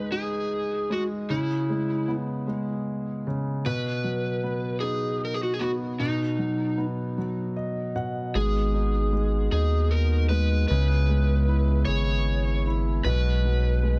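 A light reverb and a digital ambience frame this melancholic pop excerpt, and its 6/8 metre carries an aching mood. From the start, an overdriven electric slide guitar, played with fingerpicks and run through a digital delay, sings the dark, up-front melody over a clear concert grand piano whose polished tone, long sustain and audible action noise sit close to the listener. The piano adds a fill at 7.2 seconds. Then a round analog bass arrives at 8.3 seconds with a deep, sine-like, sustained low end, joined at 8.4 seconds by a clean tonewheel organ holding chords in the background through a slow rotary speaker. The harmony moves through minor-seventh and sixth colours, passing through G#m7 and C#m7 before closing on G#m7/B.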